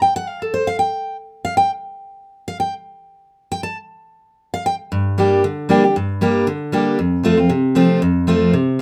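Light reverb surrounds a single picked steel-string acoustic guitar, which sits up front in the mix with the warm sound of a dreadnought. This brief, lonesome but driving bluegrass fragment is cut from a longer piece and moves at a brisk pace with a lightly swung feel. The guitar carries the whole recording alone, reaching from deep bass notes to bright high ones. For the first 4.9 seconds it plays a solo line before any chord is set, and then the harmony takes shape as a new passage begins and runs to the end at 8.8 seconds.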